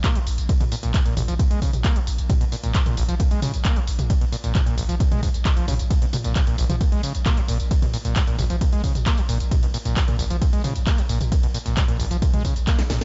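Intense and dark, this excerpt of driving peak-time techno runs at 133 BPM in a straight 4/4 in Bb phrygian, built on a punchy analog kick placed up front and a layered electronic kit of cracking snare, handclaps, hi-hat, ride cymbal, tambourine and toms, whose hats, cymbals, percussion and toms pump against the sidechain. A growling, buzzy 808-style bass holds Bb1 through overdrive and a low-pass filter, while a screaming, squelchy sawtooth acid riff spanning Bb1 to Bb3 cuts through with resonant filter sweeps, distortion, chorus, sidechain pumping and a diffuse ambient delay. The mix is dry with a dark, rolled-off top end, and a drum fill arrives at 12.8 seconds as the kick drops out.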